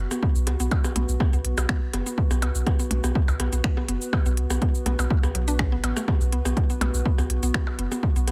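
Minimal techno in straight 4/4, cool and clinical in mood, cut from a longer piece. An up-front electronic kick drum with an analog punch and a tape-warm edge anchors the groove, re-recorded in a small room alongside a layered techno kit of cabasa, finger snaps and smooth hi-hats. A deep sine sub bass with a pitch-drop attack sits forward in the mix, sustained and mellow, while a woody, round FM pluck with a noise layer and ring modulation carries the riff through chorus and dub echo. Underneath, a warbling, nostalgic pad built from detuned square and triangle waves unfolds with a slow attack and long release, lo-fi and dark, bathed in chorus and its own reverb. The bass, pad and pluck all pump with the sidechain, and electronic percussion blips, re-recorded in a large room, scatter through a digital delay inside a digital ambience.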